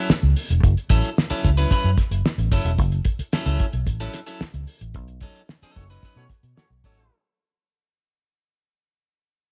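A lightly broken-up electric guitar with subtle chorus and cassette-tape grit opens this sly, funky excerpt, joined at once by a round, foam-muted fingered bass and a cloth-damped drum kit with a fat snare and tight kick, both up front, while a grainy egg shaker sits in the background. The groove rides an F#m7 before the band hits an accent on a B9 at 5.0 seconds, and a distant, mellow horn section with vibrato and octave doubling slips in at 5.8 seconds. The whole excerpt fades out, carrying the small-room ambience of a home recording on cassette.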